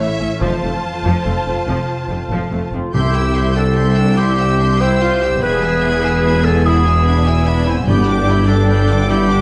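A solo clarinet, up front yet roomy with a soft attack, enters at 2.7 seconds to carry a second line through this soaring, triumphant excerpt of heroic adventure film score in a straight 12/8. Above it, a distant, intense violin section sings the lush, vibrato-rich melody high in its register, supported beneath by a second, focused violin section on its own line. Violas fill the middle with clear bowed accompaniment, while a bright, ringing concert harp plays fingerpicked arpeggios in the background. The foundation comes from a smooth-topped cello section and an even, lightly vibrato double bass section, both prominent in the mix, with very quiet timpani struck by hard mallets marking brief accents at 2.9 and 7.9 seconds. Moderate scoring stage reverb gives the ensemble a grand, spacious sweep as the harmony moves from F to C, E and G.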